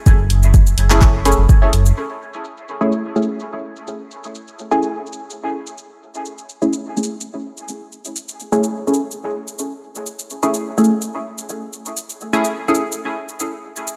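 Hazy, hypnotic dub techno at 126 BPM opens on an F#m7 chord, with a deep, tape-warm electronic kick and a round, dark analog bass pumping under sidechain until the bass drops out at 1.9 s. A dry, overdriven analog drum machine keeps handclaps, hi-hat and shaker going through to 14.0 s, while a muted, detuned dub chord stab with chorus, phaser and dub echo carries the music into Amaj7 at 2.0 s. Briefly, a warbling, lo-fi pluck, wave-folded and mellow, sits in the background with its own echo in this cut from a longer piece.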